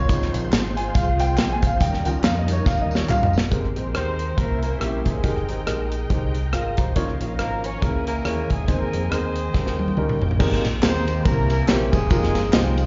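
A warm grand piano with audible action noise and slapback echo opens this hopeful, uplifting uptempo gospel piece in swung 4/4 at 140 BPM in Ab major with a solo before settling into accompaniment, backed by a reedy tonewheel organ with key click and fast rotary speaker, lush bowed strings in the background, a round, punchy dub bass and an up-front drum kit with a tight kick and dark cymbals, with tambourine and handclaps in the background, while a dark horn section doubled in octaves takes the melody from 4.0 seconds, all heard as a live club gig through the venue's PA with a muffled top end.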